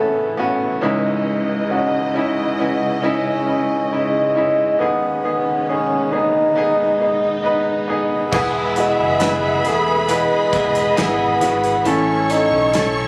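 A close-miked bassoon with classical vibrato carries the tender, heartfelt melody of this pop ballad excerpt, backed by a bright, woody upright piano up front and a lush, bowed string section holding smooth sustained chords. At 8.3 seconds a punchy acoustic drum kit with a pumping room sound joins, along with a deep sine sub bass with octave and very quiet, clean picked electric guitar arpeggios. The mix sits in a moderate hall reverb and carries the studio ambience of a phone recording made in the room.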